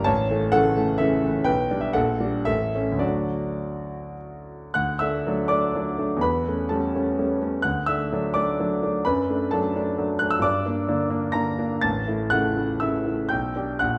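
A concert grand piano, placed up front with a deep bass and a smooth, vintage tone, carries this passionate, lyrical romantic character piece alone, ranging from A1 to Bb6 in a flexible, rubato three-beat lilt. A brief opening passage moving through A, G/B and Gm/Bb gives way at 4.8 seconds to a longer second section that travels through A7/E, D, D/F# and Gm, all set in the lush reverb of a recital hall. This short excerpt is cut from a longer piece.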